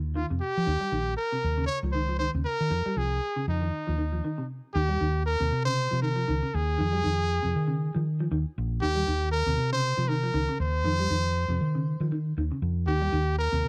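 A clean, picked semi-hollow guitar plays arpeggios over a dark, round and punchy short-scale hollow-body bass to open this joyful, funky afrobeat cut at 118 BPM in Eb mixolydian, tuned slightly flat to A4 = 436 Hz, with a lightly swung sixteenth feel. A brilliant, up-front trumpet carries the solo melody with vibrato and scooped notes in a pop style, moving over Eb7 and Fm7 chords. A brief break at 4.2 seconds leads into a longer second section, all captured in a dry, close 1970s-style studio sound.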